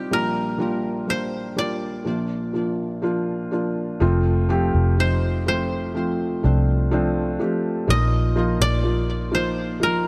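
Light reverb and a heavy wash of echo surround this fragment of a heartbroken, emotional pop ballad in a straight 4/4. A woody koto, plucked with fingerpicks and carried by tape echo, sings the melody over a soft, intimate felt-muted upright piano whose mellow chords move from Gm7/Bb to Bb. At 4.0 seconds a dark, round, foam-muted electric bass enters up front as the harmony shifts to F and then settles on Bbsus4.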